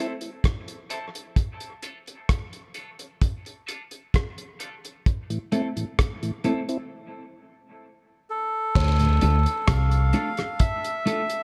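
A reedy, breathy melodica takes the melody from 8.3 seconds, its line trailing dub echo over a hypnotic, spacious dub reggae groove at 65 BPM in D minor, cut from a longer piece. Before it, a clean, compressed electric guitar with subtle chorus and dub echo and a mellow tonewheel organ with key click and slow rotary speaker carry a break beneath a filter sweep, moving between Am and Dm, while a cloth-damped, thuddy drum kit with a tight kick, rim click and dark cymbals sits up front. At 8.8 seconds a round, deep fingered electric bass arrives with a brief echoed touch of cowbell and jawbone-type rattle in the background, all in a dark production with light reverb.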